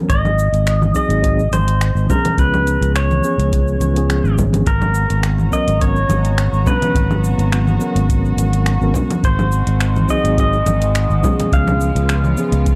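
A growly, punchy fretless electric bass sits up front in this sunny sunset chillout excerpt, its sustained low notes thickened by tube saturation. Above it, a twangy pedal steel guitar carries the melody with a bright, compressed slide tone, played with fingerpicks and shaped by volume swells and analog delay. A mellow tine electric piano supplies clean accompaniment through its built-in speakers, with a touch of tape echo, as the harmony moves between G#7, C#7 and G#m11 over a gently swung 16th-note feel. The deep house kit layers metallic hats, cabasa and finger snaps over a deep, tape-warm analog kick, while low-tuned, thin-skinned congas sit in the background from 0.8 seconds. At 4.7 seconds a reedy studio string section enters with bowed, gut-string chords and light vibrato in a period style. The whole piece has a dry, gritty hardware sound with little reverb.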